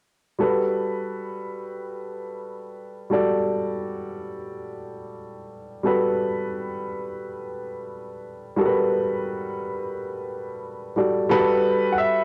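R&B with a smooth, soulful mood and a lightly swung 16th-note feel, this short excerpt is carried by a woody upright piano in accompaniment, resting on a Gmaj9 chord from 0.4 seconds. Just before the end, at 11.9 seconds, a clear baby grand piano slips in with a brief melody, intimate and long-sustaining, with its action noise audible. Both pianos sit up front with a cassette tape character, in a small room with a moderate, homemade ambience.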